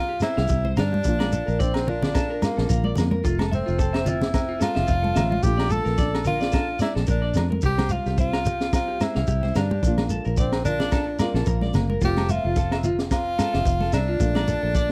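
A breathy tenor saxophone sings a sunny, jazz-style melody up front over a thumb-plucked nylon-string guitar and a round, foam-muted fingered bass, joined at once by a twangy clean electric guitar with lush chorus and slapback echo and, from 0.2 seconds, a gritty, saturated breakbeat kit with a high-tuned snare, hard-hand congas, a grainy shekere and ringing agogo bells, in a dry, close 1970s-style highlife guitar band recording with a light swing.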